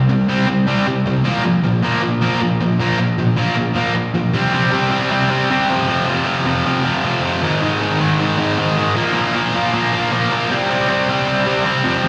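Heard through a live venue's PA with a lush recital-hall reverb, this energetic, upbeat punk fragment at 156 BPM in 4/4 features a lone sludgy, overdriven electric guitar, picked, double-tracked and up front with slapback echo and digital delay, pushing through C5, Bb5, F5 and Ab5 power chords from 0.0 to 12.1 seconds, with a new section arriving at 4.3 seconds.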